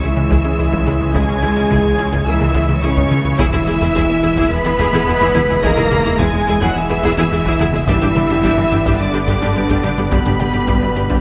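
Hybrid orchestral and electronic cinematic film score, brooding and vast, at 107 BPM in 4/4, moving from C#m through E to G, in which lush, vibrato-rich violin sections carry a high, distant melody and a second line over bright viola accompaniment, dark, roomy French horn chords and a chorused analog pad, while rich cellos, a very quiet double bass section, a punchy, plucky analog bass riff and a deep, rumbling detuned saw bass fill the low end, a faint baby grand piano adds texture, a squelchy, resonant blip pluck plays arpeggios from 0.2 seconds, and a taiko ensemble struck with hard sticks sits in the background from 0.3 seconds, all within a moderate concert hall reverb.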